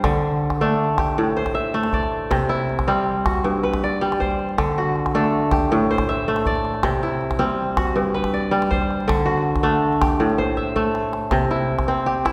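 Bathed in the long, wet reverb of a concert hall, this flowing, hypnotic West African traditional piece in a straight 12/8 sets an up-front, fingerpicked kora's crisp, ringing arpeggios over a deep, close and dry calabash, cycling through C, G, D and Am until a drum fill at 10.4 seconds leads into a closing C.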